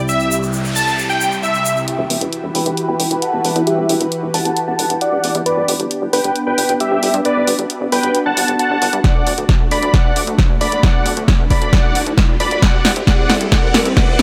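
A lush, detuned pad opens this bittersweet, emotional uplifting trance excerpt at 134 BPM in E minor, its slow-attack chords pumping with sidechain and chorus, while a huge supersaw lead carries the melody above it, dense, compressed and up front with a low-pass filter and tape echo. In the opening moments a grainy, bright egg shaker and a background noise sweep set the scene. At 1.9 seconds a punchy analog drum machine brings in hi-hat and snare as the build-up begins, and a filter sweep works on the supersaw. A plucky, funky bass with a fast attack and a decaying sawtooth-and-square tone joins underneath, also pumping and high-passed, as the harmony moves through C, Emadd9, G and D before returning to C. At 9.0 seconds an up-front electronic kick arrives with a drum fill, and a riser joins in the background toward the end, within light reverb and digital ambience.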